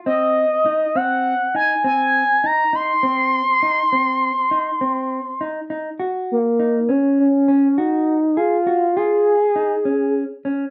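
An expressive, up-front synth lead with a smooth sawtooth-and-triangle tone, soft attack, chorus and vibrato carries the melody across this driving, bright progressive instrumental excerpt in 5/4 at 101 BPM in Gb lydian, while a dark, clean, fingered electric guitar plays quieter arpeggios beneath it in a wet studio reverb, the harmony moving from Ab to Gbmaj7 at 6.0 s and to Db at 9.0 s.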